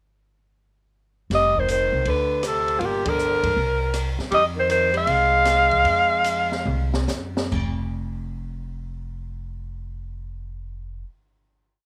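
Smoky, swinging small-group jazz in F minor at 136-160 BPM, where a clear, up-front alto saxophone states a motif-based melody with vibrato over a breathy tenor saxophone harmony line mostly in sixths with scooped notes, a woody pizzicato upright bass in two-feel, and an open drum kit with dark cymbals, a high-tuned snare and a boomy kick, all in light reverb with a faint mains hum, the band hitting an accent at 3.0 seconds and slowing from 4.3 seconds before a drum fill leads to the bass holding the final note until 11.0 seconds.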